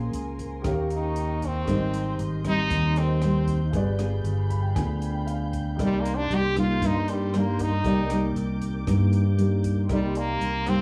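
A thumb-plucked nylon-string guitar, round, up-front fingered electric bass, an intimate grand piano in the background and veiled, con sordino strings open this smooth, melancholic bossa nova in C minor at 117 BPM, with a compact cocktail kit of hi-hat, rim click and punchy kick joining at 0.1 seconds. At 0.9 seconds a stopped French horn takes the solo melody, nasal and metallic with light vibrato, over chords moving from Bbm9 through Eb7, Abmaj7 and G7b9 to Cm7. The piano adds a brief fill at 4.3 seconds in this dry studio excerpt cut from a longer piece.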